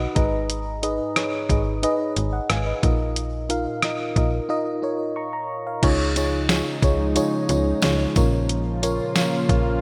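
Nostalgic yet urgent, this short cut from a longer 1980s-style pop piece moves at 90 BPM in a straight 4/4. A mellow FM electric piano with chorus opens with a brief fill and carries the accompaniment up front, its soft, round, dark tone touched by a noise layer, while a snappy, slap-like FM bass with a metallic attack anchors the low end. A clean 12-bit digital drum machine sits forward in the mix with a thumpy kick, fat snare, hi-hat, rim click and crash cymbal. The harmony moves from Abm to Bbsus4, and around 5.8 seconds the music shifts to a second section on Dbadd9 before settling on Bbm. A thick, detuned sawtooth unison pad with chorus swells in at 6.1 seconds with slow-attack sustained chords, joined in the background by a jingly, compressed tambourine. A lush hall reverb and bright digital production give the whole a glossy period sheen.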